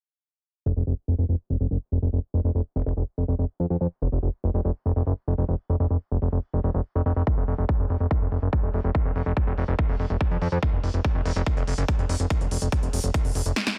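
A filter sweep opens this intense, driving psychedelic trance excerpt, cut from a longer piece, as a fat analog bass enters at 0.7 seconds, sitting up front between F1 and F2. The bass is thick, nasal and saturated, blending sawtooth and square-wave tones with a detuned, evolving character, a fast attack and sustained notes. Moments later a big-room dance drum kit joins with a punchy snare and crisp hi-hats, its layered electronic sound carrying tape character and the air of a large room. At 7.3 seconds an electronic kick drum arrives up front, hard-hitting and layered, driving the straight 4/4 pulse at 143 BPM. The mix is dry and dense, with a heavily limited modern master and a low-pass filter, and a drum fill at 13.6 seconds closes the passage.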